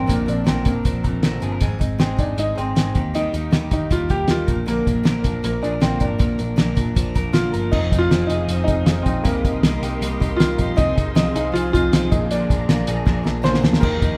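A woody, slightly detuned upright piano carries the melody from the opening, over a full-bodied picked steel-string acoustic guitar in the background, a slightly broken-up electric guitar playing arpeggios through a small old amp, and a round, foam-muted electric bass, giving this excerpt of jangly indie pop a youthful, breezy lift. A cloth-damped, thuddy drum kit sits up front with a fat snare, tight kick and dark cymbals, and at 7.7 seconds a silky string machine with ensemble chorus joins in the background with slow-attack sustained chords as the harmony turns to Fm7 and Cm7. A drum fill at 13.1 seconds closes the passage on Bb7, all set in a moderate recital-hall reverb.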